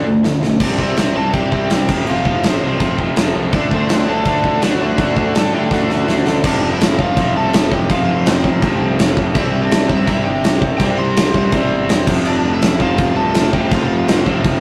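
The big rock drum kit sits up front with a fat snare, a tight kick and crashing cymbals in a big room, opening on a fill and throwing another one at 5.7 seconds into this rowdy, upbeat punk rock cut at 165 BPM. Two picked electric guitars, one distorted and compressed in the background and one overdriven, hammer out riffs over a growly, fuzz-driven picked bass, while a bright cranked stack guitar carries the melody from 0.6 seconds. Moderate studio reverb and a rough rehearsal-room sound give the straight 4/4 drive a raw edge as the chords move from D to F, C and back to F after 6.4 seconds.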